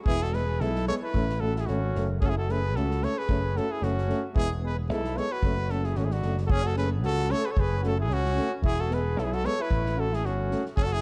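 A bright, close-miked trumpet carries the melody up front with a soft attack and a touch of analog delay, while a distant, roomy flugelhorn with vibrato sings a second line beneath it in this restless, fiery Balkan brass band piece in F# minor at 112 BPM in 2/4, with a light 16th-note swing. Two mellow euphoniums hold the accompaniment in the background, one with a light vibrato, as a direct picked electric bass and an acoustic drum kit with a punchy kick and a medium-tuned snare played with bundle sticks drive the groove. The chords move among E, A and F#m under a dark production with light reverb, and the recording is cut from a longer piece, running about 11.0 seconds.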